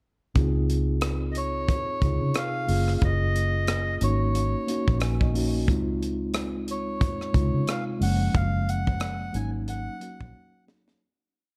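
A mellow tine electric piano opens the piece, pushing rootless chords through its built-in speakers, and a moment later a tight funk drum kit with a high-tuned snare sets a smooth, swung soul groove from a small room, alongside a round, foam-muted fingered electric bass playing a melodic line with slides. The electric piano adds a short fill at 4.7 seconds, while a reedy, breathy melodica enters at 1.3 seconds with nasal call phrases touched by tape echo. This lush, romantic 1970s-style soul piece has a dark, warm production and closes with a fade-out from 8.3 seconds and a drum fill from 10.3 seconds.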